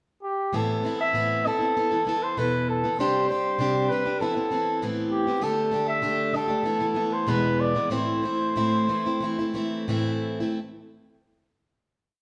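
This brief acoustic folk piece in A minor moves at an intimate, melancholic 98 BPM with uneven beats, its flugelhorn entering at 0.2 s to sing a free, classical-style melody with light vibrato and a distant, roomy tone. A plugged-in steel-string acoustic guitar joins at 0.5 s with boxy, picked sixteenth-note strumming in open chord shapes, finger squeaks audible, moving through suspended and added-ninth colours before settling on A minor. The duo plays live in a stone room with a generous reverb, and the tempo slows from 5.4 s to the close.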